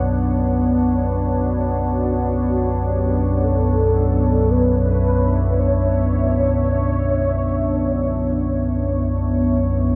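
A deep, rumbling drone sits up front in this ominous, desolate piece of dark ambient, its sawtooth and triangle tones rising slowly and sustaining under a phaser, lush chorus and its own reverb. Beside it, a moody pad holds sustained chords built from detuned sawtooth unison, a sine sub octave, wave-folding and ring modulation, its mellow body carried by chorus and reverb. A bronze singing bowl rings at the edge of hearing, metallic and meditative with a slow beating. From 1.3 s to 8.9 s a round, horn-like synth lead sings a melody, its soft attack and filter swell shaded by vibrato, ensemble chorus and delay. A moderate plate reverb soaks the whole dreamy mix, and this short passage is cut from a longer piece.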